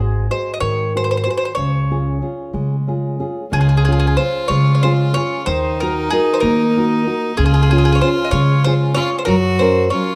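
Italian folk serenade in a romantic, wistful mood, moving at a rubato 62 BPM in 6/8 in Db major, this short excerpt pairs a mellow, picked bowl-back mandolin melody with thumb-plucked nylon-string guitar and a woody, growly pizzicato upright bass, all three close up front. At 3.5 s a bright violin enters with a light-vibrato, nasal second line over chords moving from Ab7 through Db, Ebm and back to Db before landing on Gb. A moderate recital hall reverb gives the small ensemble a sense of space.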